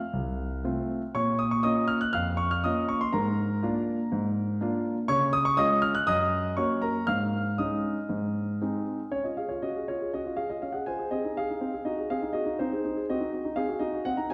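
In a straight four-beat metre, this elegant, serious classical-period piano sonatina excerpt features a solo concert grand with a deep bass and a natural, up-front tone, spanning C2 to Gb6 in a wet recital hall reverb under a dark production, its harmony shifting at 5.1 s before a new section begins at 9.1 s.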